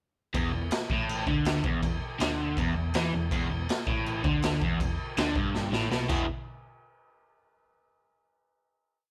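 This is a complete garage rock piece, raw and swaggering, played as a duo or trio at a straight 162 BPM in 4/4, with tuning set to A4 = 442 Hz. Starting at 0.3 seconds, a crunchy, overdriven electric guitar sits up front with a double-tracked, picked single-note riff over E5, ranging from E2 to G#4. Underneath, a dark, round hollow-body short-scale bass stays in the background, driving eighth notes that double the guitar riff. The acoustic drum kit is gritty and boomy, with a medium-tuned snare, crash cymbal and a rolled-off top, pounding out a stomping garage groove in a small, pumping room. A drum fill arrives at 5.5 seconds, the harmony moves to E at 6.1 seconds, and the piece closes on a final hit at 6.3 seconds. Light reverb surrounds the band, which sounds as if it is playing live together in one room.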